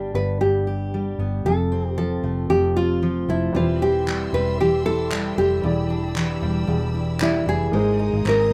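A full-bodied nylon-string guitar carries the melody up front in this sunny, carefree acoustic pop excerpt in C major, moving at 115 BPM with a light sixteenth-note swing over a fingerpicked jumbo steel-string guitar and a dark, round, punchy muted electric bass. At 3.5 seconds a soft, felt-muted upright piano joins in the background with audible action noise and a slapback echo, followed by a smooth, bowed studio string section holding sustained chords with vibrato. From 4.1 seconds, crisp, distant group handclaps add percussion, all captured dry with little reverb.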